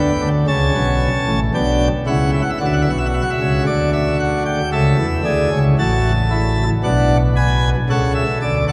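Classical in a baroque style, this short passage cut from a longer three-part fugue for solo pipe organ carries a stately yet joyful mood at a measured 57 BPM in 4/4. The organ speaks on a full plenum with mixtures, its brilliant baroque voicing and crisp chiff sitting up front while spanning from A1 to A5. The harmony moves from A7 to D, then A/C# and on to Bm7 across the 8.7 seconds. A cathedral reverb with a 6.1-second decay bathes the instrument in a long, resonant wash. The production leans dark, giving the bright registration a rich, enveloping setting.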